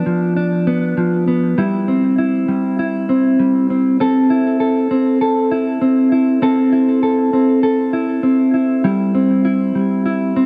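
A mellow electric guitar carries this dream pop excerpt entirely alone, its clean, fingered tone sitting dark and compressed up front in the mix. The mood is dreamy and floating, moving at 99 BPM in a straight 4/4 feel in C major, with tuning set slightly high at A4 = 441 Hz. The guitar stays within a modest range from F3 to A4, softened by a subtle chorus and a touch of delay. A moderate plate reverb with a 2.9-second decay surrounds the part, lending the sound a hazy, suspended quality. The harmony opens on Bdim over F before settling onto C at 1.6 s, then shifts to C6 as a new section begins at 4.0 s, returning to C at 8.8 s before the clip ends at 10.5 s.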